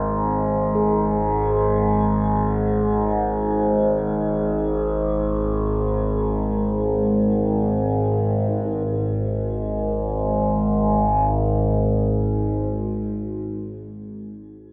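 Desolate and dark, this fragment of a longer dark ambient drone piece centers on an up-front, resonant drone blending sawtooth and sine tones, its moving overtones swelling in slowly and sustaining under chorus, built-in reverb and phaser until 13.1 seconds, while a soft, metallic bronze singing bowl struck with a felt mallet rings with slow beating and shimmer reverb in the background from 0.8 to 8.5 seconds, all set in a wet spring reverb.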